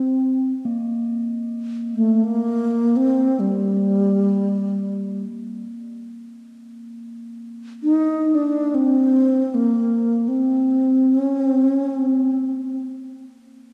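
A close-miked, airy alto flute with a wooden head carries a haunting, meditative free-time melody in C dorian, its soft-attacked, unsteady vibrato tone set up front with cassette-tape colour, while a very quiet bronze singing bowl struck with suede adds a ringing, slowly beating metallic shimmer until 9.0 seconds, all bathed in a lush hall reverb on this home cassette recording cut from a longer piece.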